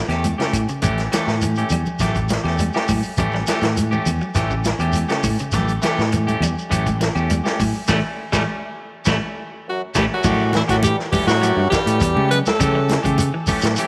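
The recording has a light reverb and a small-room ambience, with a punchy, rolled-off vintage drum kit of dark cymbals and a medium-tuned snare sitting forward in the mix. This hypnotic, driving afrobeat cut, taken from a longer piece, rides a straight 4/4 groove over an A7 chord, anchored by a round, up-front fingered electric bass. A clean electric guitar plays arpeggios in the background while a twangy guitar at the edge of break-up adds stabs through spring reverb. Grainy shekere, woody claves and very quiet, bright congas fill out the percussion, and the claves drop out at 10.1 seconds. At 9.7 seconds an edgy alto saxophone with vibrato and tape echo takes the melody, backed by a nasal, straight-muted trombone and a dark, veiled, cup-muted trombone section in the background, just as a band accent and a drum fill lead into a new section at 10.3 seconds.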